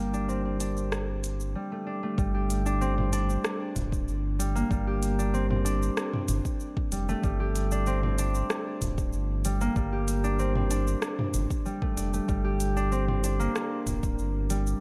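Dry, this mystical, meditative organic downtempo piece in G minor at 95 BPM sets bright, ringing, thumb-plucked concert harp arpeggios with digital delay over a round, nasal analog bass with tube saturation and sidechain pumping, while an overdriven organic electronic drum kit of crisp hi-hats, rim click, shaker and toms, re-recorded in a large room and opened by a filter sweep, is joined at 2.2 seconds by a deep, tape-warm electronic kick drum.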